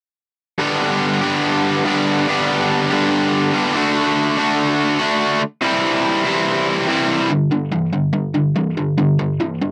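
A straight, steady 4/4 pulse drives this short rock clip, cut from a longer piece, with a sunny, forward-pushing mood. A lone electric guitar carries the whole passage, played through a cranked stack with overdrive, picked and double-tracked so it sits bright and up front. It enters at 0.6 seconds and moves through G, D and C, spanning G2 up to G4. At 7.3 seconds the music shifts into a new section built on a G5 power chord, running until the clip ends at 9.7 seconds. The sound is dry and close, in the manner of a 1970s studio, with only a light touch of reverb around the guitar.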